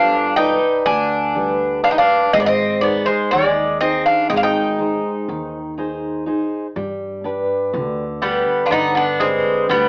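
Greek folk in a melancholic, wistful mood, set in 9/8 at 122 BPM in G phrygian dominant, this short cut from a longer piece features two up-front bouzoukis throughout: one carries a bright, metallic melody on doubled strings, while the other plays a warmer second line beneath it. A full-bodied, fingerpicked jumbo steel-string guitar supplies accompaniment and a woody, thumpy upright bass sits low in the mix, with the harmony moving from G to Ab at 2.3 seconds and back to G when a new section begins at 6.8 seconds. The whole recording carries a worn, warbling old-tape character with cassette-like pitch drift, an AM-radio tone and a wet studio reverb.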